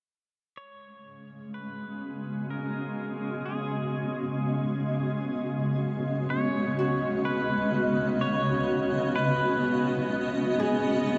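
A vast, wet reverb with a long tail of 9.4 seconds wraps this serene, spacious ambient fragment, which is cut from a longer piece and moves at a slow 63 BPM in 3/4 around a G#m chord. A bright, twangy pedal steel guitar fades in from 0.6 seconds to carry the melody, its clean, compressed slide tone and volume swells trailing into shimmer reverb and diffuse ambient delay. Sitting up front, a cloudy granular pad holds sustained chords from 1.4 seconds, its blurred, detuned triangle texture shifting under a moving notch and a filter sweep. Beneath it, a calm, organ-like drone warbles with a vintage, chorused sine tone in the low register. At 6.8 seconds an acoustic Celtic harp enters with ringing, fingerpicked arpeggios, which are also bathed in shimmer and delay.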